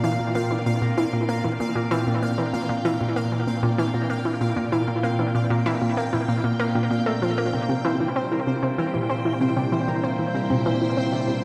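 This luminous, expansive ambient space-music excerpt features a swirling, vintage string machine holding sustained chords through ensemble chorus and phaser. Alongside it from the start, a ringing, fingerpicked concert harp plays tape-echoed arpeggios, a round, nasal analog pluck drives an up-front riff, and a pulsing, tempo-synced gated texture hovers in the upper register, all moving at 96 BPM in Bb lydian. The harmony rests on Bb before shifting to C at 7.5 seconds, and the echo-heavy mix sits in a wet chamber reverb.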